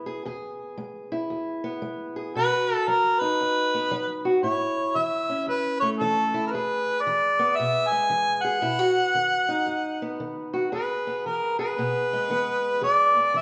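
A mellow harmonica with light vibrato and scooped notes carries the melody from 2.4 seconds over a dark, woody fingerpicked steel-string acoustic guitar in this laid-back, gritty acoustic country blues excerpt in E major, swinging at 115 BPM in 4/4 and cut from a longer piece, with a recital-hall reverb lending the harmonica a distant, roomy air.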